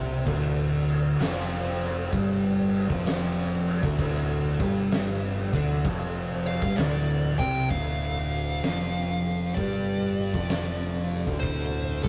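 A thick fuzz guitar sits up front, grinding out a dark, distorted riff in the low register from the very start of this brooding, ominous stoner and doom metal excerpt. A second fuzz guitar plays a riff of its own further back, its picked tone compressed and dark, while a growling picked electric bass adds an overdriven, amped weight underneath. The oversized, low-tuned drum kit joins at 0.3 seconds with a punchy kick, fat snare, dark cymbals and hi-hat, its gritty, saturated sound pumping inside a bright stone room. At 6.5 seconds a fuzz lead guitar enters with a distorted melody higher up, and the music shifts into a new section at 7.7 seconds over the same slow, swung D minor groove. The whole thing has the rough feel of a rehearsal-room take, closed in by a short, wet booth ambience.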